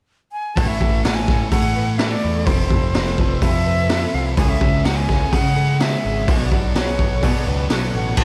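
A studio-reverb haze wraps this wistful, blissful shoegaze and dream-pop rock excerpt at 126 BPM in A major, where a breathy, bright jazz flute with vibrato and analog delay carries the melody from 0.3 seconds, joined at 0.6 seconds by a gritty, boomy garage drum kit up front, a growling overdriven picked bass, a dark, thick fuzz guitar riff, a clean, twangy electric guitar riff with reverse reverb in the background, and a shimmering, woody twelve-string acoustic guitar picking arpeggios through ensemble chorus, the band moving over Aadd9, Fmaj7, C#m and Bmadd9.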